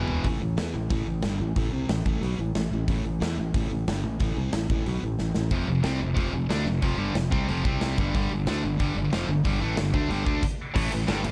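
A heavy, epic metal clip opens with a drum fill as a sludgy, overdriven guitar riff and a growly, punchy fingered bass enter together, with a tight distorted guitar flashing in for a split second. The big acoustic kit sits up front in a roomy space, its punchy kick, medium-tuned snare, toms and shimmering crash, ride and hi-hat driving a straight, fast pulse. After another fill, the tight guitar returns at 5.5 seconds, picked and up front with a crisp, biting edge as the riff moves through a run of power chords. The band hits a brief stop at 10.4 seconds, then a double-tracked distorted guitar enters in the background at 10.8 seconds as the riff lands on a fresh chord. Light reverb and a dark, warm production give the dense guitars and bright, direct bass a thick, weighty sound.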